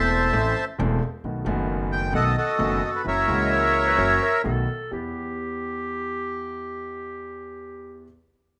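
A reedy, up-front bandoneon melody opens this sultry, tense tango excerpt in E minor at 131 BPM with a rubato feel, over an intimate concert grand piano whose action noise and deep bass come through, and a woody, thumpy pizzicato upright bass on gut strings that stops at 5.1 s, while a distant, roomy classical-style clarinet adds a second line from 3.5 s, with plate reverb on the bandoneon, piano and clarinet in a rough home demo mix with a dulled top end.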